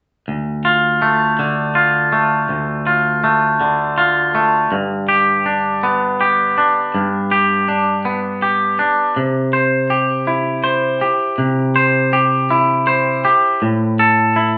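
In a straight 3/4 at 81 BPM, this rock excerpt moves with an unhurried, swaying pulse that feels both cathartic and melancholic. A single twangy electric guitar carries everything, playing fingered arpeggios from 0.3 to 14.6 seconds across a range from D2 to C5. Its tone is clean and up front, and the harmony in D dorian walks from Dm to G, then C, settling on Am at 13.6 seconds. A wet studio reverb gives the guitar a roomy halo, and the sound of a band playing live in one room comes through with a soft top that fades out above 7.9 kHz. Tuned to A4 = 443 Hz, the fragment is cut from a longer piece and ends on that minor chord, leaving a wistful sense of something unresolved.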